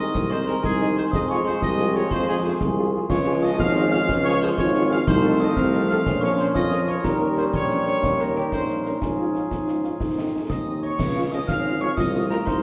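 A proud, festive military-style march for wind band opens in 6/8 at 122 BPM with a mellow trumpet section carrying the melody, a clear euphonium and a bell-like glockenspiel struck with soft plastic mallets adding second lines, and a close, dry battery of concert snare, concert bass drum and dark-toned clash cymbals driving the straight feel. Underneath, a roomy French horn section fills in the accompaniment while a bright trombone section with light vibrato holds sustained chords, and a clear, vintage-sounding tuba anchors the bass as the most prominent voice. The harmony settles into Db major from 3.1 s, moving through chords such as Bbm and Eb7 before arriving on Ab and returning to Db at 11.0 s, where a new section begins. A pure, vibrato-tinged piccolo slips in at 10.5 s as a soft background line. The whole band is heard from further back in a recital hall with a wet reverb, giving the short cut, lifted from a longer piece, a spacious, ceremonial sound.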